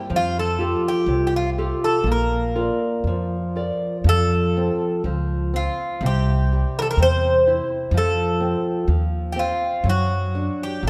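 A metallic, picked Greek bouzouki carries the melody on double strings, some of them octave-doubled, in this nostalgic, tender fado-style ballad in a loose rubato 2/4, with a small, fingerpicked nylon-string guitar and a woody pizzicato upright bass sitting up front beside it in a moderate concert-hall reverb, as the music moves into a new section at 4.1 s and then breaks off as part of a longer piece.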